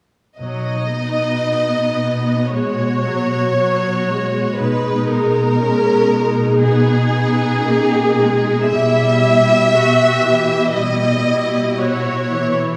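Cinematic film score for orchestra, this short excerpt is hopeful and moving, unfolding slowly at 54-60 BPM in 4/4 with a rubato feel in B major. A violin section carries the second line up front, its bowed tone lush and expressive with vibrato, a soft attack and a smooth top. Beneath it a viola section supplies rich, focused accompaniment, while a concert harp spins mellow, ringing arpeggios plucked with the thumb. A cello section holds the bass on a low B, close and warm with vibrato. The harmony moves from B to G#m/B at 4.6 seconds and Em/B at 8.7 seconds over that steady pedal, and the whole ensemble plays together from 0.4 to 12.8 seconds, heard from further back in a wet recital hall.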